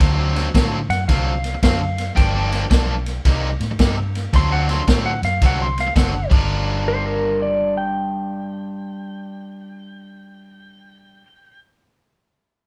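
A clean, compressed lap steel carries the melody from 0.9 seconds, its dark slide tone moving through volume swells over a brooding, smoky electric blues shuffle in G minor at 111 BPM, with a swung feel moving through D7#9, Gm7 and Cm7. Beneath it, an overdriven semi-hollow guitar picks a bright riff, while a foam-muted fingered bass adds a round, punchy low end. A vintage acoustic kit with dark cymbals and a rolled-off top sits up front until 6.4 seconds, all played live in one room with moderate studio reverb.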